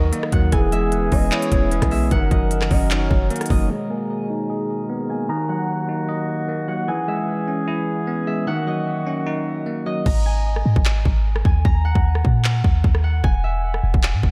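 A deep, boomy 808 bass anchors this brooding, dark half-time trap excerpt at 151 BPM in G# minor, joined by a hard-clipped kick, crisp hats, handclaps and rim clicks that drop out along with the bass around 3.7 seconds during a filter sweep and return at 10.1 seconds with the hi-hats muted, while a bright, bell-like tine electric piano, a mellow, distant woodwind section holding sustained chords, ringing fingerpicked harp arpeggios with analog delay and a detuned, gliding sine lead with chorus and vibrato sitting in the background fill out the light reverb.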